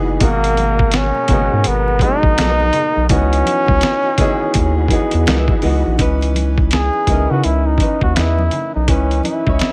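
R&B and neo-soul at a relaxed swung pace, introspective and late-night in mood, built on a gritty, overdriven sampler-style drum kit with a thumpy kick up front, a round, deep analog bass, a woody upright piano and a very quiet tonewheel organ with key click and fast rotary shimmer that drops out at 6.0 seconds. A breathy flugelhorn carries the melody with light vibrato and scooped notes, moving into a solo from 6.0 seconds, while low-tuned, ringing congas sit very quietly beneath. A dark, fingerpicked flamenco guitar adds a second line in the background between 1.3 and 8.4 seconds, all within a small room ambience.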